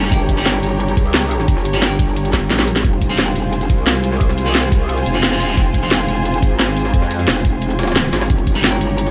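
Dark technical drum and bass at 176 BPM in F minor, this tense, futuristic excerpt cuts from a longer piece and moves from a G diminished chord to F minor, returning to G diminished near 8.3 seconds. A metallic, wobbling FM bass with chorus and overdrive sits up front alongside a knocking electronic kick and a layered drum and bass kit with a cracking snare, bright hats and tambourine, both re-recorded in a small room. Beneath them, a very quiet sampler-style jungle kit adds a gritty, pitched-up, high-tuned snare and ride cymbal, and a drum fill breaks in at 2.3 seconds. A deep, moody sawtooth pad with a sub octave, chorus, 12-bit sampler grit and sidechain pumping holds sustained chords in the background, while a distant, lush string section with vibrato adds bowed texture that also pumps under sidechain compression. A thick, bright fuzz guitar fires stabs through tape echo until 5.9 seconds, returning once at 8.6 seconds. 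Light reverb and digital ambience frame the mix.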